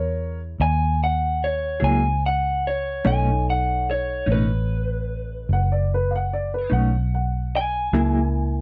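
Lightly reverberant and dusky, this short cut from a rollicking, soulful slow blues in 12/8 rests on a round, punchy, foam-muted vintage electric bass up front, a woody upright piano carrying a second line and an intimate baby grand with audible action noise comping beneath, while a slightly broken-up, lo-fi electric guitar through a small old amp takes the melody from 0.6 seconds and a clean, fingered electric guitar with tremolo joins the accompaniment from 1.8 seconds over F#9 and B9 chords.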